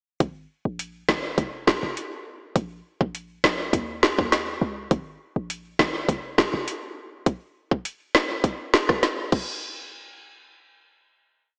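Tough and bouncy, this short, complete dancehall piece moves in a straight 4/4 groove, tuned slightly below standard pitch. An electronic, produced island pop drum kit sits up front from 0.2 s, its tight kick, woody snare and metallic hi-hats carrying a tape-warm edge, with rim clicks and crash cymbal rounding out a dancehall beat where a syncopated kick is answered by the snare. A short 808-style bass, punchy and sine-based with a noise layer, adds syncopated low notes with a fast attack and a decaying tail before dropping out at 6.7 s. The drums continue until 9.5 s, and a final hit closes the piece at 9.6 s. The mix is dreamy and soaked in a lush hall reverb, yet it has a small-speaker character.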